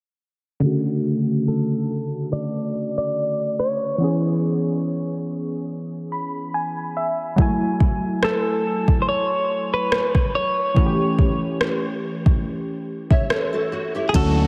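Contemporary R&B at a slow 71 BPM in 4/4 with a light sixteenth-note swing, this late-night, longing excerpt drifts through a dreamy mix soaked in huge ambient reverb. Round sawtooth analog keys open the piece with chorus, a low-pass filter and a filter sweep, their fast-attack, decaying chords moving from Dmaj7 through C#m7/E to F#m9 and A7, with a brief synth keys fill before the drums arrive. A bright, clean electric guitar recorded direct carries the picked, compressed melody up front, touched by subtle chorus and delay. At 7.4 seconds a smooth R&B drum kit enters with a soft kick, smooth hats and rim clicks, tape-warm and re-recorded in a large room. Near the close, a fingerpicked classical nylon-string guitar adds arpeggios through ensemble chorus and delay, and at 14.1 seconds a lush bowed string section with vibrato and sidechain pumping, a dark, foam-muted fingered electric bass on D2 and an electronic downlifter all appear in the final moments.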